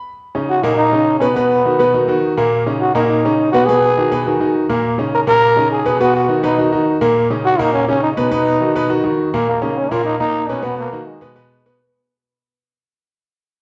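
Soaked in the reverb of a large studio and heard from further back in the room, this fiery, driving Latin cut in Eb minor moves at 207 BPM in a straight 4/4. A raspy, growling trombone with vibrato and a smooth top carries the solo melody up front, while a brilliant, polished grand piano with audible action noise and long sustain accompanies over chords shifting among Eb5, Bmaj7 and Abm7. Taken from a longer piece, it fades out from 9.5 seconds to its end at 11.8 seconds.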